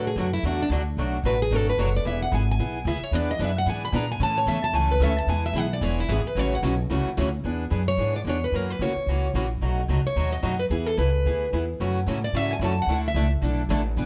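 Lively, charming jazz manouche swinging briskly at 222 BPM in a short cut from a longer piece, where a plugged-in, boxy parlour steel-string guitar sits up front, taking a solo through the first 7.4 seconds and then carrying the melody, while a second parlour guitar with fresh strings picks out accompaniment, a woody, thumpy gut-string upright bass is plucked up front, and a full-bodied dreadnought, bright like the other guitars, joins in the background at 3.1 seconds, with finger squeaks from the two parlour guitars and a light reverb around the whole performance.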